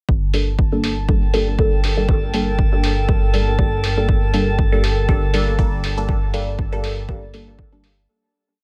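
Hypnotic and meditative, this short dub techno piece in G minor moves at 120 BPM with a lightly swung groove, built on a punchy four-on-the-floor electronic kick, a muffled open hi-hat and a round, deep analog bass holding the root beneath a Gmadd9 chord. Dark, detuned filtered chord stabs in a dotted rhythm carry phaser and dub echo. A warbling, nostalgic tape-like pad enters at 1.3 s and a glassy texture of drifting overtones hovers high above, and the stabs, pad, texture and bass all pump against the kick. The room is dry, and the piece fades out from 5.4 s.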